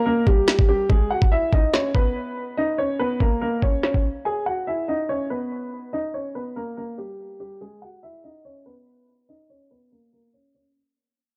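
A half-time drill pulse at 143 BPM in 4/4 opens this cold, dark hip hop fragment in G# minor, cut from a longer piece. An electronic drum kit plays from 0.3 to 4.0 seconds, its knocking kick and woody snare overdriven and placed up front. A dark baby grand piano carries the melody from the start until 10.7 seconds, ranging from G3 to G#5. It sounds mellow, worn and boxy, with audible action noise giving it an intimate closeness, and it is shaped by a low-pass filter and analog delay. The harmony moves between G#m and D# chords, sometimes thinned to a rootless voicing or a bare fifth. The dry, gritty recording sits in a digital ambience with its own low-pass filtering, while a filter sweep and a fade-out run across the whole clip.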